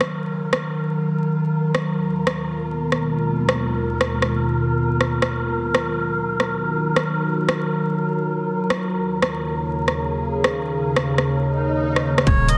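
A swung, half-time groove in 4/4 drives this cavernous, heavy deep dubstep fragment: an overdriven garage kit of hi-hat and rim click sits up front beneath a detuned, resonant sawtooth drone whose moving overtones and chorus colour its sustained chords, while a dark, airy wind-like noise texture breathes underneath. An electronic swell arrives at 11.5 s, and at 12.3 s a reedy, nasal melodica, a round, soft dub sub bass and a tight, layered electronic kick come in just as the clip ends. The dense, heavily limited mix carries a moderate spring reverb and is dusted with vinyl crackle.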